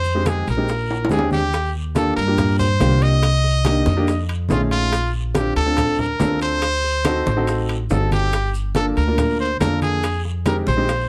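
Sunny and lively, this Afro-Cuban jazz excerpt puts a brilliant, forceful trumpet solo up front, with scooped notes and light vibrato on plate reverb, over a woody, growly pizzicato upright bass and warm concert grand piano chords. Congas, tight high-tuned bongos, ringing timbales and grainy maracas sit in the background, joined by a raspy, very quiet guiro, with a drum fill from 0.9 to 1.5 seconds leading into the longer second section. The production is dark, with moderate studio reverb, while the chords move through rich jazz colours such as Cm9, D7b9 and Gm9.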